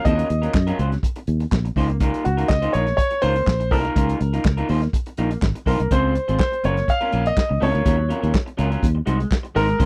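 Disco at 123 BPM, driving and danceable, this short dry 1970s-style studio excerpt sets an up-front concert grand piano carrying the melody over bright, slightly broken-up twangy electric guitar accompaniment from a small old amp, a round, foam-muted fingered bass and a dark soul drum kit with handclaps, hi-hat, a tight kick and snare, moving through Ebm9 and Db69 before shifting at 5.9 seconds to Dbmaj7, Gbmaj7, Ebm9 and an Ab7 turnaround.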